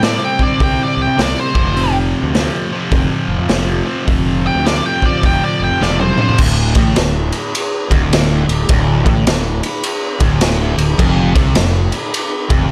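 A swung 104 BPM groove in 4/4 drives this brooding, gritty blues rock power trio excerpt with a southern rock edge in D minor, built on a punchy, saturated garage drum kit with a pumping small-room sound and a fill at 5.8 seconds, a double-tracked overdriven electric guitar riff, and a growly fuzz fingered bass, while a dark octave-fuzz lead guitar carries the melody up front until 6.4 seconds, all heard close and dry with little reverb.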